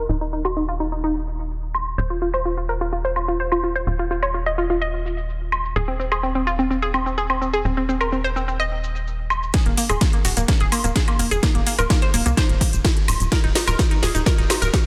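A straight 4/4 pulse at 127 BPM drives this dreamy, expansive progressive house excerpt, where a round analog pluck arpeggiates through chorus and tape echo under a filter sweep over a tight, sawtooth sequencer bass and an overdriven house kit with a cracking snare and metallic hats, all pumping with sidechain, until at 9.5 seconds a punchy overdriven kick and a very quiet, gritty breakbeat kit join for a build-up and drum fill over Eb5 harmony.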